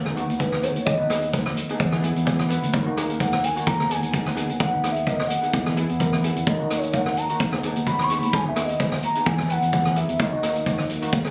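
A soft, breathy sine lead carries the melody through this dramatic, driving calypso fragment, entering at 0.4 seconds with a pure, full-bodied tone colored by chorus, vibrato and tape echo. Beneath it, steel pan played with hard rubber sticks supplies shimmering, metallic accompaniment, sitting quieter than the other parts. A fingered electric bass adds a round, punchy low end, while a street-band drum kit of hi-hat, boomy kick and rim click sounds up front and mid-forward with a rolled-off top. The groove moves at 129 BPM in 4/4 with a light swing on the sixteenths, cycling through G# minor, E and D# minor chords. Captured on a phone in the room, the recording carries a light club reverb across the whole excerpt.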